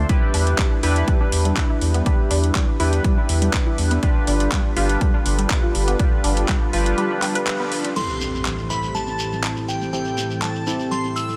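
An excerpt of bittersweet, dreamy progressive house opens with a smooth, chorused analog pad, a tight detuned sawtooth arpeggio, glossy polysynth stabs and a round saturated bass, all pumping against the sidechain, plus a punchy up-front kick. A break at 7.0 seconds gives way at 8.0 seconds to a crystalline FM bell melody with a soft supersaw second line, grainy shekere and an electronic impact over the pop kit's metallic hats, handclaps and crash.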